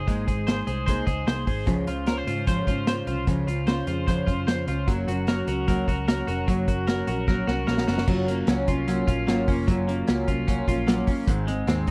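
Jangly indie pop with a nostalgic, breezy mood, cut from a longer piece and heard through a dry, close 1970s-style studio sound with light reverb. A full-bodied fingerpicked steel-string acoustic guitar and a bright, twangy clean electric guitar playing arpeggios with subtle chorus move through Abadd9, Dbmaj7 and Gb chords. A round, foam-muted electric bass and an up-front vintage drum kit with dark cymbals and a punchy kick support them, and a drum fill at 7.3 s leads into a new section at 8.1 s that settles on Gbmaj7 before turning to Ab.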